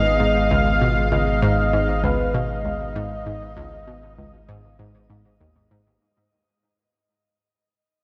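Ambient, sequencer-driven space music at 98 BPM in 4/4, cosmic and luminous over a G# minor chord and tuned to A4 = 442 Hz, where a breathy, flute-like synth lead with vibrato, tape echo and shimmer reverb carries the melody until 5.4 s over a sweeping, resonant pad of evolving detuned chords, a bright, round analog pluck riff with ring modulation and a filter sweep, and a deep sine sub bass holding G#1, the dreamy mix soaked in lush hall reverb and fading out across this 6-second cut from a longer piece.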